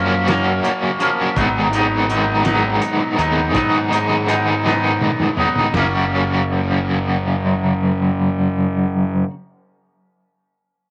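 A slow, straight 6/8 pulse at 55 BPM, felt in dotted quarters, carries this wistful, carefree indie rock excerpt in F# major, tuned to A4 = 444 Hz and captured as a lo-fi home cassette recording in a small room. Up front, a bright, overdriven stack guitar plays a picked riff through tremolo and cassette tape saturation, alongside a clean, scooped twangy electric guitar riff with subtle chorus and tape echo, and a fuzzy, overdriven picked bass underneath. A muffled, cloth-damped drum kit with dark cymbals, a fat snare and a tight kick enters at 0.3 seconds, plays a fill at 4.7 seconds and stops at 5.9 seconds, while the harmony moves from F#maj7 to G#m7 before settling on F#.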